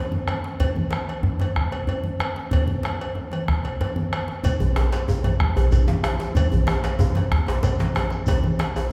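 Earthy and powerful, this short cut from a longer West African traditional drum ensemble piece moves at 125 BPM in a straight 12/8, with congas entering at 0.1 s and soon joined by a round, up-front bombo, a metallic cowbell and a deep djembe. At 4.4 s a grainy, mellow shekere comes in from the background, and a second djembe follows at 4.6 s with a tight, cracking tone, metal rattles, soft hands and an up-front presence. The warm, thick-skinned, medium-tuned congas carry on throughout, and the ensemble rings out in the wet reverb of a recital hall or church.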